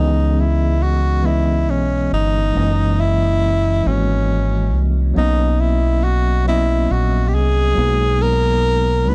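Slow six-eight R&B in C# dorian at 46 BPM, this short excerpt cut from a longer piece carries a yearning, late-night mood across its 9.1 seconds. A breathy tenor saxophone takes the solo melody from the start, close-miked and up front with a clear, pop-style tone and vibrato, moving between C#4 and B4. Beneath it, a tine electric piano plays clean accompaniment through a combo amp, colored by medium tremolo. A fingered electric bass sits up front with a dark, round, direct and amped sound, holding the low register from F#1 to C#2. The harmony moves through C#m7, F#13, Bmaj9 and G#m9/B, framed by studio reverb and a dry, gritty hardware recording with cassette tape character.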